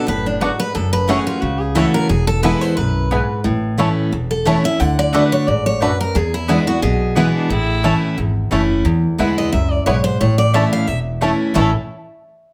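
Two up-front picked steel-string acoustic guitars open this lively, driving bluegrass excerpt in A major at 178 BPM with a light swing, a bright dreadnought carrying the melody over a full-bodied jumbo accompaniment, joined almost at once by woody pizzicato upright bass, a twangy, percussive fingerpicked banjo melody and double-string mandolin stabs, while a nasal, earthy fiddle with light vibrato adds a brief second line from 7.2 to 8.2 seconds, the ensemble sitting in a moderate large-studio reverb.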